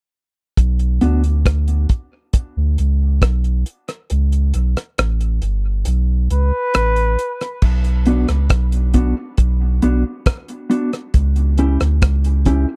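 A deep, round sub bass sits up front in this heavy, spacious dub reggae excerpt, entering at 0.6 s with a soft, sustained tone and a fast attack. A damped 1970s-style acoustic drum kit plays alongside it, with dark cymbals, a tight kick, rim clicks and hi-hat, though the kick falls silent from 4.1 s to 7.6 s. A dark, clean, fingered electric guitar sounds briefly near the start, then returns at 8.1 s, compressed and bathed in spring reverb and dub echo. A clear flugelhorn with vibrato and scooped notes plays a short solo phrase at 6.3 s, its tail trailing off into dub echo. The harmony moves from B minor to Gadd9, then back to B minor before a closing C# diminished. The dry, close recording keeps the whole band intimate and present.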